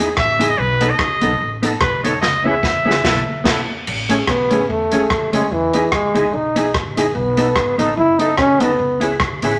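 A clear trumpet leads this bouncy, joyful ska excerpt at 146 BPM with a light swing, taking a short up-front solo with scooped notes and a smooth top before a present trombone with vibrato and its own scooped phrasing takes over at 3.9 seconds. Underneath, a swinging big-band drum kit sits forward in an airy hall, its punchy kick, medium-tuned snare, rim clicks, hi-hat and crash rolling into a fill as the band hits an accent just before the handoff. A dark, clean electric guitar plays fingered, compressed accompaniment, while a gritty, overdriven tonewheel organ adds thick stabs from the background through chorus vibrato and a slow rotary speaker. A woody pizzicato upright bass anchors the low end as the chords move through Emaj7, B7 and C#m7, shifting to Amaj7 for the trombone's turn. A moderate studio reverb gives the whole polished performance a sense of space, and the recording is a clip cut from a longer piece.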